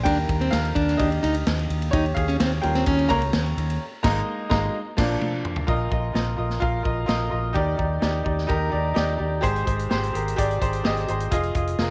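A light, small-room reverb surrounds this hopeful piano-driven pop excerpt at 128 BPM, where a clear, intimate baby grand sits up front with its action noise audible as it carries the opening solo over Eb, Eb7, Absus2 and Bb. A round, foam-muted vintage electric bass holds the low end, and a woody, fingerpicked steel-string acoustic guitar with old strings plays a brief riff that stops at 3.2 seconds. A natural country drum kit with a punchy kick and medium-tuned snare plays from the start, takes part in a band accent at 3.8 seconds and lands a fill at 5.2 seconds, and from 5.7 seconds the harmony moves through Bbsus4, Ebmaj7, Abmaj7 and Fm7.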